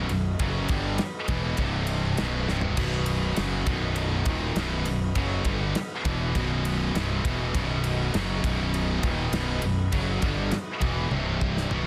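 A growly, punchy fuzz bass sits up front in this dark, epic heavy metal passage, cut from a longer piece and moving at 101 BPM in a straight 4/4. Beneath it, two heavy high-gain guitars, one double-tracked, and a scooped high-gain guitar play distorted, picked riffs from the background, their tone bright and saturated. A modern studio drum kit, also up front, brings a tight kick, a medium-tuned snare, toms, crash and ride in a small room, with a drum fill at 2.5 seconds and another from 11.1 seconds to the close. Very quietly behind the band, a pipe organ on light flute stops holds sustained chords in a romantic voicing. The harmony shifts between B and C5, and the dense, heavily limited master keeps the sound compact and forceful.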